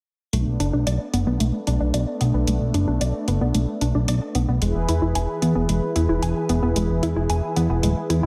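Synthwave with a nocturnal, driving mood, this short excerpt moves at 112 BPM in a straight 4/4 in B minor, shifting from Bm7 to E at 4.6 seconds. A fat, saturated analog bass sits up front, its detuned sawtooth tone thick yet mellow, with a filter sweep running across its notes. Above it, an analog pluck plays bright, round arpeggios with a ring-modulated edge, swept by a filter and carried by chorus and tape echo. A brassy, bold analog pad holds sustained chords with a soft attack, vibrato and chorus. An electronic hi-hat with a sampler-style, tape-warm character keeps time in its own studio ambience. A moderate lush hall reverb of 1.7 seconds gives the whole mix a big arena sound.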